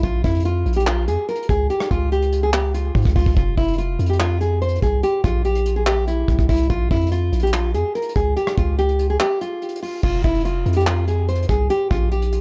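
Menacing and brooding, this trap-flavored hip hop excerpt moves at 144 BPM in a half-time feel, in F harmonic minor. A bright, full-bodied fingerpicked nylon-string guitar carries the melody up front with tape echo, over a deep, sine-like 808-style bass whose long, decaying notes sit prominently in the mix, and a dark, smooth brush kit with a tight kick, hi-hat, rim clicks, handclaps, crash cymbal and a rolled-off top. Studio reverb gives the whole piece an echo-heavy sound, and a brief break at 9.2 seconds leads into a new section at 10.0 seconds that runs to the cut.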